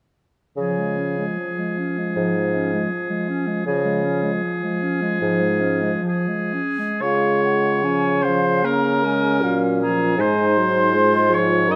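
Serene and warm, this slow romantic movement for wind quintet unfolds in Db major at a flexible, rubato pace between 56 and 81 BPM, opening on a Db chord and settling onto Ab near 10.2 s in this brief excerpt from a longer piece. From 0.6 s, a clear, up-front oboe carries the second line over a mellow French horn with light vibrato, a soft-edged, distant clarinet, and a smooth-topped bassoon anchoring the bass. At 7.0 s a hollow, airy concert flute enters with the melody high above, its vibrato and crisp attack captured close, all set in a moderate recital-hall reverb.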